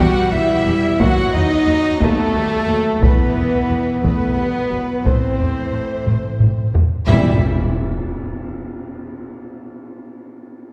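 A slow 6/8 pulse at 59 BPM in dotted quarters drives this epic, dramatic orchestral film-score excerpt in E harmonic minor, where violin sections carry the melody and a second line with a hollow concert flute over lush viola accompaniment, cello and double bass sections in the low end, mellow French horns and a dark, quiet trombone section holding sustained chords, and a distant solo trumpet adding stabs. A close, dry taiko ensemble struck with heavy sticks enters at 1.0 s and plays through a drum fill into a band accent at 7.1 s, where a round timpani hit and a bright tam-tam land as an impact, joined by a huge sub drop at 7.3 s. The whole is heard from further back in a reverberant scoring stage, with the horns standing most forward among the sustained parts.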